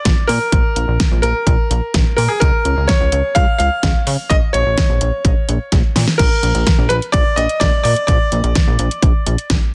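A dense, heavily limited modern master with light reverb frames this cool, melancholic synth-pop snippet at 127 BPM in a straight 4/4. A clear concert grand piano carries the melody with delay, over a glossy, chorused synth bass with a saturated sawtooth and pulse-wave edge and a pop drum kit built on a punchy kick, fat snare and metallic hats. The harmony moves from an open, chordless passage to Db at 2.4 seconds and back again, and a drum fill from 5.7 to 6.2 seconds ushers in a new section.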